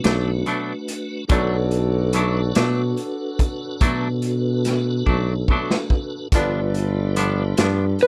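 A slow blues in 12/8 at 48 BPM, counted in dotted quarters, this brief excerpt in B minor feels mournful and brooding, moving from Bm7 to G7 at 6.3 seconds. A raw garage drum kit sits up front with hi-hat, punchy kick, medium-tuned snare and dark splash cymbal, its saturated, gritty sound pumping in a small room, and it plays a fill from 5.1 to 6.3 seconds. A warm tuba carries the bass in a jazz style with vibrato, while a picked, clean electric guitar adds bright accompaniment colored by tremolo. A piping, scooped tonewheel organ holds sustained chords through lightly overdriven chorus vibrato and a slow rotary speaker, key click audible, as a brilliant, woody upright piano rings with long sustain higher up. An electric slide guitar, slightly broken-up and compressed, enters on a single B4 at 8.0 seconds just as the cut ends, and the dry mix has little reverb.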